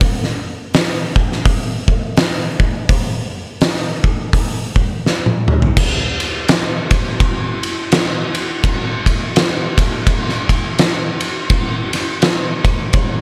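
Metal drumming at 84 BPM in 4/4, with a swung eighth-note feel, sets a brooding, heavy mood in this short cut from a longer piece. A single oversized, low-tuned acoustic kit carries the whole recording from the start, using kick, snare, hi-hat, ride, crash and toms. Its sound is dark and gritty with saturation: the kick is boomy, the snare fat, the cymbals dark, and the top end rolled off, all placed up front in a fairly dry mix. A drum fill at 5.0 seconds leads into a new section at 5.8 seconds, and the kit plays on until 13.1 seconds.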